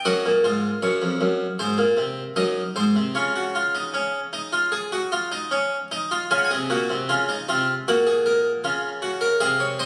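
In a straight 4/4, this joyful, elegant fragment of a baroque-style three-part fugue features a solo Flemish-style harpsichord, close-miked and up front with a brilliant, plucked tone and full octave strings, ranging from F2 to Ab5 and moving from Gb through Ab7 and Db before a new passage at 6.3 seconds settles on Gb/Bb, all set in a recital hall's reverberant glow with the studio ambience of a phone recording made in the room.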